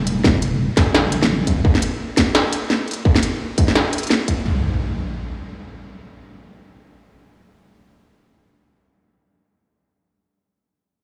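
A deep, soft wobble bass with a sine-like, sustained tone, thickened by chorus and tube saturation, opens this dark, cinematic fragment of half-time drum and bass at 171 BPM, lasting only until 1.6 s. Up-front industrial drums with a clanging snare and smooth hi-hats, plus a distorted electronic kick, both carrying a tape-warm character from being re-recorded in a large room, drive the swung groove until 4.4 s. An up-front electronic impact then takes over at 4.5 s, with everything washed in a huge ambient reverb and the stony echo of a bare room.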